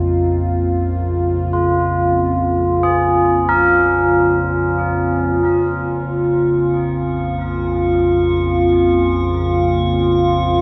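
Ominous and unsettling, this dark ambient drone drifts in free time, cut from a longer piece and built on a Bbmadd9 chord. A sweeping, resonant pad sustains chords up front with chorus and phaser, while mellow tubular bells ring solemn arpeggios through a diffuse ambient delay, and a deep rumbling drone holds the low end beneath them. At 6.3 seconds an eerie, inharmonic metallic drone joins on a single note, all of it bathed in a cavernous cathedral reverb.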